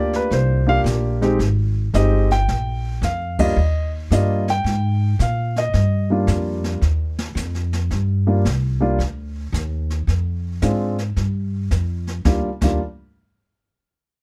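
A playful, swinging jazz piano trio opens with a warm grand piano carrying the melody, up front and short in sustain, over a woody plucked upright bass with steel strings, while brushed drums with dark cymbals, a medium-tuned snare and a boomy kick join at 0.1 seconds. The band hits an accent together at 3.3 seconds as the harmony moves from Gm7 through Abmaj7 to Ebmaj9, and a new passage begins around 7.9 seconds. The sound is close, detailed and nearly dry, with the drums carrying a natural small-room quality, in a short clip cut from a longer piece.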